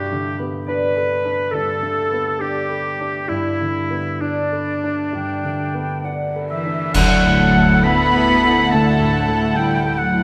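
Heard in a moderate scoring-stage reverb, this moving, hopeful cinematic film-score excerpt in D major unfolds in rubato at 65-72 BPM, with a clear, up-front oboe, a solo clarinet in classical style and an airy, bright flute carrying second lines over ringing, fingerpicked harp arpeggios and a baby grand piano accompaniment, while a dark cymbal swell, clash cymbals and concert bass drum join at 3.3 seconds; sul tasto strings gather from 6.5 seconds, and as Gadd9 gives way to Dadd9 at 6.9 seconds a distant, woody violin melody with vibrato sounds over a pure, floating second violin line, background violas, intimate cellos and a smooth-topped, dark double bass section.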